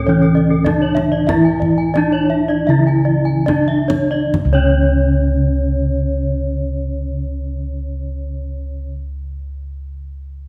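Balinese gamelan in C# pelog, shimmering and hypnotic, that slows down over its first 4.3 seconds within a 66-107 BPM range. Bronze metallophones in paired tuning ring with shimmering beats: a mid-range melody and a low accompaniment sit over bossed gongs that sound round, full and up front. Two higher arpeggio lines add sparkle, one played with a horn mallet for a bright, airy tone, while a deep kendang drum with hard hands joins until 4.8 seconds, all set in a dark production with light reverb.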